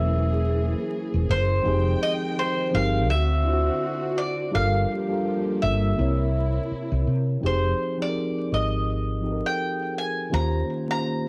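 A lightly swung 16th-note groove at 83 BPM in 4/4 sets up this smooth, late-night R&B excerpt in F dorian, where a picked, double-strung mandolin carries the melody through plate reverb over a mellow tine electric piano treated with phaser, both up front and tinged by cassette tape. A dark, round fretless electric bass with lush chorus anchors the low end until 10.6 seconds, while a bowed studio string section with vibrato holds sustained chords until 7.4 seconds, when the harmony shifts from a passage moving through Gb9, Fm9, D7, Gm7 and C7b9 into a closing stretch on Fm9 and Eb13. The home cassette recording has light reverb and vinyl crackle, lending the smooth sound a lo-fi patina.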